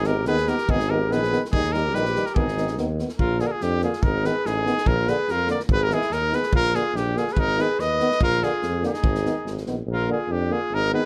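Restless and bittersweet, this brief Balkan brass band passage in a brisk 2/4 puts a clear trumpet up front, carrying the melody with light vibrato and a touch of plate reverb, while a clear alto saxophone traces a second line in the background. Beneath them, a distant, roomy euphonium and a trombone with vibrato fill out the accompaniment, a warm tuba anchors the bass, and an acoustic drum kit with a punchy kick and medium-tuned snare drives the beat until 9.7 seconds. The harmony moves from Abm through Eb before swinging between Abm and Bb in a small, moderately reverberant room, and the passage is cut from a longer piece.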